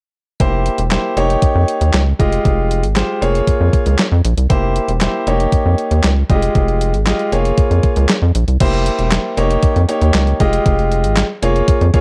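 Early-eighties boogie funk with a slick, danceable mood, this short cut from a longer piece sets a clear, smooth concert grand piano playing accompaniment against a rubbery, nasal square bass with a bouncy filter pluck. A crisp 8-bit drum machine drives the groove with a thumpy kick, a medium-tuned snare, handclaps, hi-hat and crash cymbal, carrying a tape-warm, sampler-style character. All three parts sit up front in a dark production with light reverb and digital ambience, cycling through the same chord loop over an F pedal into a new section at 8.6 seconds.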